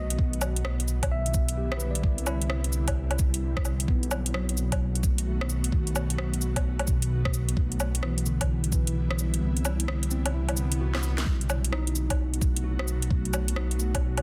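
Future garage at 130 BPM in 4/4, with a swung sixteenth-note feel and a wistful, nocturnal mood, cut from a longer piece. A worn, slightly out-of-tune tine electric piano heard through a combo amp carries the accompaniment with analog delay, while an ethereal, airy pad of detuned saw and triangle voices sustains chords beneath it with ensemble chorus and a long release. A dark, rumbling detuned saw bass sits up front, and it, the pad and the piano all pump against the sidechain. The garage drum kit brings a cracking snare with soft clipping, metallic hats, cabasa, rim click and woodblock, joined by a knocking, tape-warm electronic kick. The harmony moves through Em7/B, Cadd9 and B7. Around 9.4 seconds the kick drops out, an electronic swell sounds in the background from 10.6 seconds, and a drum fill runs from 10.9 seconds until the kick returns at 11.3 seconds, all within a dense, heavily limited mix with light digital ambience.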